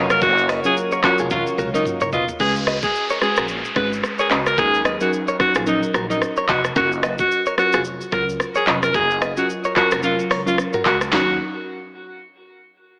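This mellow, hypnotic afrobeats excerpt moves at 110 BPM in 4/4 with a swung sixteenth-note feel, set in Eb minor and cut from a longer piece. An overdriven afro-pop drum kit drives it with a knocking kick, sharp snare, handclaps, rim clicks, shaker, toms and hi-hats, and plays a fill from 1.3 to 2.4 seconds. Beneath, a woody, growly pizzicato upright bass anchors the low end, while a bright, compressed clean electric guitar repeats a picked riff through a diffuse ambient delay and a crystalline wavetable pluck with chorus adds decaying accompaniment. Up front, an edgy, forceful alto saxophone carries the melody with vibrato. In the opening seconds a distant, roomy horn section offers a second line and a very quiet detuned sawtooth pad holds sustained chords, and both stop by 2.4 seconds, when the harmony moves from Ebm7 to Db7sus4 and an electronic downlifter sweeps in the background. The whole mix is dreamy and soaked in plate reverb, with an AM radio character.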